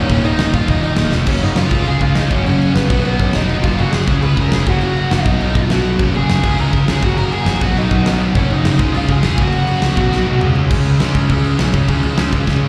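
A live punk rock cut heard through a venue's PA in a hall's reverb, this aggressive, angry excerpt drives at 204 BPM in straight 4/4, with a dark, smooth lead guitar carrying an overdriven melody until 10.4 seconds over two bright distorted guitar riffs and a warm, sludgy guitar riff, all sitting back beneath a growly, punchy picked bass and an up-front big rock drum kit with a fat snare and punchy kick, whose fills mark 1.1, 10.1 and 12.5 seconds as chords cycle through Gb, Db and B.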